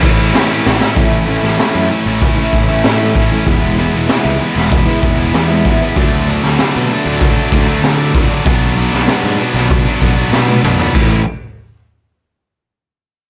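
A bright, high-gain electric guitar and a sludgy, overdriven second guitar tucked in the background open this anthemic, restless slice of quiet-loud alternative rock, driven by a growly fuzz bass and a gritty, up-front garage drum kit with a boomy kick and high-tuned snare. During a quick drum fill, a picked steel-string acoustic guitar joins at 0.9 seconds with delayed arpeggios and audible finger squeak, dropping out at 6.0 seconds as the chords move from A through E and D to B minor. A second fill carries the band into a new section at 10.9 seconds, all set in a light reverb.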